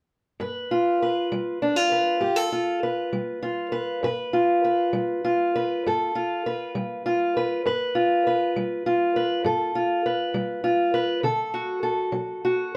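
A fingerpicked steel-string parlour guitar, dark and boxy with the woody tone of old strings and placed up front, carries this rollicking, soulful blues fragment in G mixolydian at 66 BPM in a 12/8 metre, holding a G7 accompaniment from 0.4 s before moving to D at 11.2 s, all set in a moderate small-room reverb.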